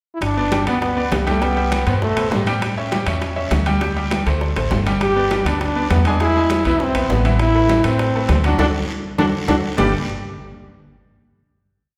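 A brisk, straight four-beat salsa groove drives this short, festive and joyful piece. Close, tight high-tuned bongos play steady eighths with hand bell, while ringing congas with slaps and open strokes, metal-shell timbales with shell pattern and bell, and a raspy guiro sit in the background. A thumpy, woody upright bass plays a pizzicato tumbao that anticipates the chords, and a bright, slightly detuned upright piano with audible action noise plays a montuno in octaves. Up front, a brilliant, punchy trombone with light vibrato plays forceful, motif-based call phrases, drops out after 2.5 seconds and returns at 5.0 seconds. The band hits an accent from 8.6 seconds before settling on a final chord, all carried by the lingering reverb of a recital hall.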